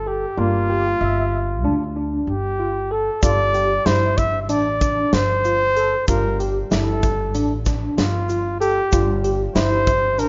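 Driving and tense, this progressive instrumental excerpt moves in an uneven 9/8, with a dark, smooth-topped trumpet carrying the melody up front through plate reverb and tape echo. It rides over a growly, woody pizzicato upright bass, a gritty overdriven tine electric piano spinning chorused arpeggios through a combo amp, and a warm grand piano tucked in the background. At 3.2 seconds a big, punchy rock kit and a grainy, very quiet shaker join in, all within a rough, dull-topped home demo sound.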